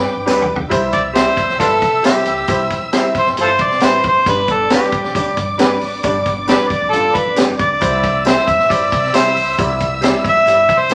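A straight 4/4 groove at 135 BPM drives this danceable, uptempo 1960s-style soul piece in C major. It opens with a drum fill from 0.0 to 0.7 s on a punchy, mid-forward vintage kit, and then a gritty, overdriven harmonica takes an up-front solo full of tongue slaps and scooped notes over G and C changes. A clear, smooth upright piano and a thumpy pizzicato upright bass fill out the accompaniment, a twangy, slightly broken-up electric guitar adds background stabs beside a jingly tambourine, and a dark, lush bowed violin section carries a second line, set in a wet large studio reverb.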